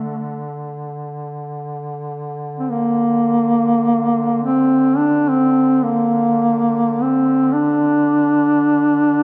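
From the first moment, a mellow duduk sings a solemn, longing Caucasian lament in free time, its smooth-topped folk line moving between A3 and D4 with vibrato and scooped notes. It sits up front over a second duduk holding a distant, warm drone on D3, which also carries vibrato and scooped notes. Cut from a longer piece, this 9.2-second fragment unfolds in a moderate concert hall reverb that lends the low drone a roomy, church-like depth.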